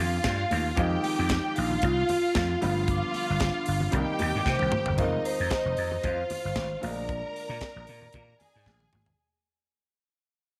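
A tight funk drum kit drives a straight, danceable disco groove in four, with a high-tuned snare, a compact kick, dry hi-hat and toms, and very quiet medium-tuned congas ringing close underneath. Up front, a growly, punchy vintage slap bass carries the low end. A mellow vibraphone struck with soft mallets sings the melody, its slow motor vibrato shimmering through a low-pass filter. A lush, bowed studio string section adds a nasal, intense second line, while a baby grand piano offers natural, short-sustained accompaniment, also softened by a low-pass filter. Moderate plate reverb and a small room give the mix some air, and the seventh-chord harmony keeps things driving. Drum fills land at 4.5 s and 8.7 s, and from 5.0 s a filter sweep and a fade-out close this fragment of a longer piece.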